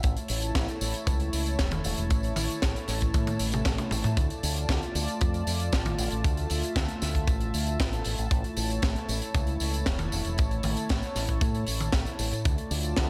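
A tight, mid-forward acoustic kick drum drives this danceable, bittersweet italo disco excerpt at 116 BPM in a straight 4/4, recorded in a small room. A fingered electric bass runs through an envelope filter and tube saturation, giving a round, punchy low end that sits direct and amped beneath the beat. A funk drum kit with a high-tuned snare, hi-hat, tambourine and toms carries gated reverb and breaks into a fill from 3.1 to 4.2 seconds. Behind them, a dark, smooth analog pad built from sawtooth and triangle waves with a sub octave holds sustained chords, its slow attack and long release coloured by chorus and a vintage 12-bit sampler grit. The harmony moves between A and D minor, with the first change arriving at 4.2 seconds, all wrapped in audible studio ambience.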